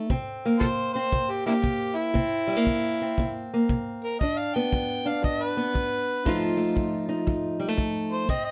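A boxy, fingerpicked steel-string acoustic guitar opens this laid-back, gritty acoustic country blues cut from a longer piece, with a parlour character and audible finger squeaks as it sits up front in the accompaniment. A punchy kick drum, played with brushes in a small room, joins almost at once and keeps a swung 4/4 pulse beneath it. At 0.6 seconds an amplified, overdriven harmonica takes the lead and solos through to the end, its warm, gritty tone pushed up front with tongue slaps and scooped notes in a jazz-inflected style. The harmony moves from C7 to G and then to F7. Light reverb gives the short passage a touch of space.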